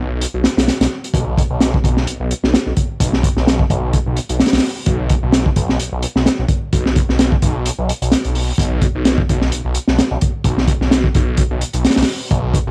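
Recorded at home on cassette and set in a moderate studio reverb, this cut from a longer breakbeat track has a gritty, energetic feel at 129 BPM in 4/4, with a light swing on the sixteenths. It opens on a phased, detuned saw bass sitting up front, thick and swirling, its unison sawtooth voices blended with square and sine tones, with a fast attack and sustained, saturated notes down around B1. The drum kit enters at 0.2 seconds: an acoustic kit of hi-hat, kick and snare, crunchy and dark with a smooth, rolled-off top and cassette tape coloring, heard in a small room yet placed close. The snare is tuned high and the kick is punchy, though the kick holds off until 1.1 seconds. From there bass and drums carry the single section through to the end at 12.7 seconds.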